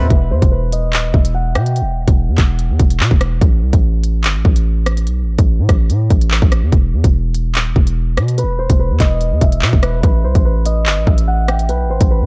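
A fingerpicked Celtic harp opens this menacing drill excerpt together with a heavy, distorted 808-style bass. The harp plays a ringing melody in a high register, softened by a low-pass filter and trailed by delay, while the bass runs through the whole clip in a deep register with a fast attack, a decaying sine tone and an aggressive noise layer. An electronic drill drum kit sits up front in a tense half-time feel at 145 BPM, with a hard-clipped kick, crisp hi-hats, handclaps and rim clicks. The harp drops out at 3.1 seconds, leaving the drums and bass to carry the E harmonic minor groove, then returns at 8.4 seconds, shortly before the chords move from E5 to Am. The production has a dark, warm digital ambience, with the acoustic harp set well behind the heavy low end and drums.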